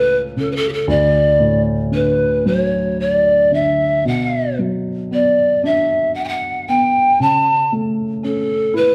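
A breathy bamboo pan flute with gentle vibrato and a soft, chiffy attack carries the tender, nostalgic melody of this Celtic slow air, drifting unsteadily in 6/8 at a rubato 38 BPM over an intimate, felt-muted upright piano whose soft chords move from A/C# to D, Bm and back to A/C#, all in a dark, warm production with a moderate recital-hall reverb in this short excerpt cut from a longer piece.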